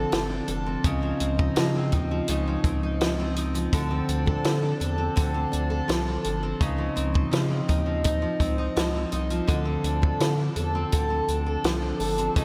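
Indie and bedroom pop with a laid-back, dreamy mood, cut from a longer piece, moving slowly in a straight 4/4 between Dm7 and Dbmaj9 chords. A full-bodied, picked jumbo steel-string acoustic guitar sits up front with audible finger squeak, coloured by lush chorus, warbly pitch drift and slapback echo. Alongside it a round, deep analog bass with a dark, nasal tone and a compact cocktail drum kit with a high-tuned snare and punchy kick fill out a lush hall reverb that gives the whole a big arena sound.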